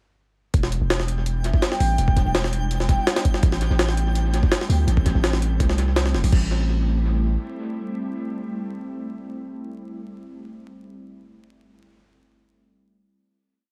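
A gritty, heavily chopped breakbeat leads this short, atmospheric and frenetic jungle and drum and bass piece. The sampler-style kit is compressed, pitched up and up front, with a thumpy kick, a high-tuned snare, hi-hat and crash cymbal trailing dub echo, and it drives the drop from 0.5 seconds. Beneath it, a deep, sine-toned 808-style bass plays a dub-style line of long, decaying notes with a fast attack and tube saturation. An ethereal pad of detuned unison sawtooth and triangle tones swells in slowly through ensemble chorus and reverb. It holds sustained chords that move from Em7 to Am7 and carry on into the final chord, ringing until 10.0 seconds. In the background, a distant, hollow wooden flute adds short, tongued answering phrases with vibrato and dub echo, while a sparkling granular texture holds a high, octave-up shimmer, all set in an echo-heavy digital ambience with vinyl crackle.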